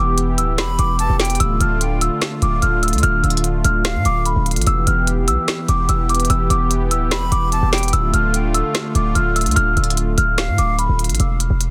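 A dense, heavily limited and nearly dry mix carries this menacing, melancholic half-time trap cut at 147 BPM, where a punchy, sine-heavy 808 bass sits up front beneath crisp hats and a woody snare from an electronic kit, a detuned sawtooth analog pad holds smooth chorused chords moving between Em and Dm, a delicate, bell-like celesta plays a filtered melody with delay, and a breathy, bright jazz flute with vibrato slips in short delayed phrases starting at 0.6 seconds.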